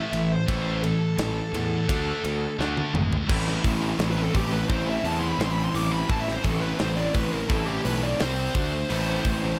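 A straight 86 BPM 4/4 pulse from a tight metal drum kit with bright cymbals drives this relentless, dark heavy metal excerpt in A minor, where a growly fuzz bass sits up front beneath heavy and scooped high-gain guitar riffs, a drum fill at 2.6 s hands off at 3.3 s from the scooped guitar to a double-tracked sludgy guitar, and a dark-toned bluesy overdriven lead guitar takes a solo over light reverb.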